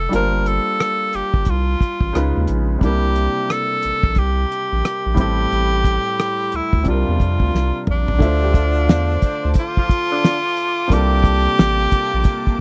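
A breathy, whispered tenor saxophone carries the melody up front in this smooth, late-night neo-soul and R&B excerpt, over a clear baby grand piano with audible action noise, a round, deep analog bass and a damped 70s drum kit with a fat snare and tight kick in a swung sixteenth feel, before a floating studio string section enters in the background at 8.2 s and a mellow, vintage horn section adds tight stabs from 8.4 to 10.4 s, all in a dry, close 1970s-style studio sound.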